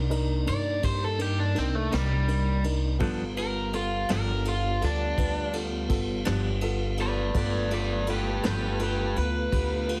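A rollicking, swaggering slow blues rolls along in a straight 12/8, cut from a longer piece, with a vintage brush kit of punchy kick, medium-tuned snare and dark ride cymbal setting the pulse from 0.1 seconds. Beneath it, a woody pizzicato upright bass sits up front, while a dark, mellow baby grand piano adds short-sustained accompaniment and a piping, scooped tonewheel organ holds chords in the background through a slow rotary speaker. Over the top, an overdriven semi-hollow guitar takes the solo for the whole ten seconds, its picked, hollow-body tone sitting up front across a range from G3 to D5. A clean electric guitar with tremolo slips in at 1.9 seconds and drops out at 8.7 seconds, adding shadowy picked accompaniment behind the band. The harmony moves from Cm7 to G7, and the mix carries light reverb and a heavily compressed, radio-like sound.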